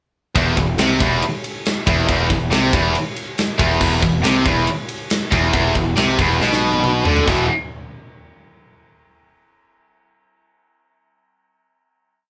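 A straight 4/4 pulse at 139 BPM drives this short, complete heavy metal piece, which feels relentless and epic from the moment the full band crashes in together at 0.4 s on an E5 chord. A tight acoustic metal kit sits up front in a big room, with bright cymbals, a medium-tuned snare and a tight kick laying down a big rock groove across crash, ride and toms. Three picked, distorted electric guitars carry a single-note riff in the low register: the heavy, double-tracked high-gain guitar stands out, while two more distorted guitars sit further back and thicken the sound. A growly, fuzz-laden picked electric bass drives eighth notes beneath them, doubling the guitar riff. A drum fill at 6.4 s launches the band into a final chord at 7.3 s, all captured as a live band in one room with light reverb.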